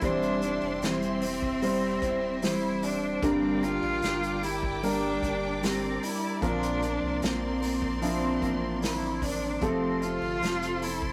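A straight 4/4 pulse from an airy, small-room acoustic drum kit played with bundle sticks carries this tender, hopeful pop ballad fragment, where a smooth, bowed solo cello with vibrato sings the melody up front over a deep-bassed concert grand piano, a full-bodied fingerpicked jumbo acoustic guitar in the background, lush sustained chords from a symphonic string section, and a round sine sub bass, all caught in a rough rehearsal-room recording with warm saturation as the harmony moves from C/E through Gm and Bbadd9 to F.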